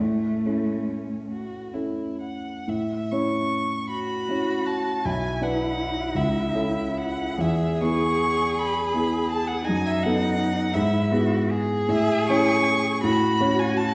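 Lyrical and serene, this slow romantic movement for piano trio unfolds in a lilting 6/8 around 40-57 BPM in the dotted quarter, its tempo breathing freely with rubato in A major. A violin carries the melody up front, its tone smooth and even with a warm vibrato, while a cello sings a second line beneath it, rich and expressive, with soft attacks and gentle portamento slides. Underneath, a dark concert grand piano supplies the accompaniment, mellow and intimate, with deep bass, a vintage character and audible action noise, and it sits a touch louder than the strings. The harmony drifts from A through E and B7 colours before settling back on A and a closing F#m/A, with a brief opening section giving way at 2.7 s to a longer passage. The trio is heard from further back in a recital hall whose reverb adds a lush, wet bloom, and this short piece, cut from a longer work, runs to 13.9 s.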